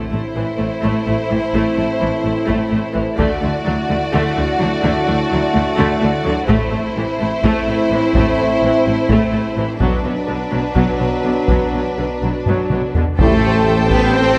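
This excerpt sits in a moderate concert hall reverb that gives the full orchestra a spacious, resonant sheen. It is an epic, heroic film-score cue in an asymmetric 7/8, driving and relentless as it builds from the very first second. Two bowed violin sections carry the melody and a second line with lush vibrato, while a clear viola section fills in the accompaniment and rich cellos and distant double basses anchor the bass. Behind them, a vintage-toned trombone section and mellow French horns hold sustained chords, and solo taiko drums struck with heavy sticks enter at 3.2 seconds, pounding through to a drum fill that closes the build-up. At 13.2 seconds, the harmony lands on Am7 and a full pipe organ principal chorus, a roomy tuba and very quiet, articulate timpani join for a brief closing section.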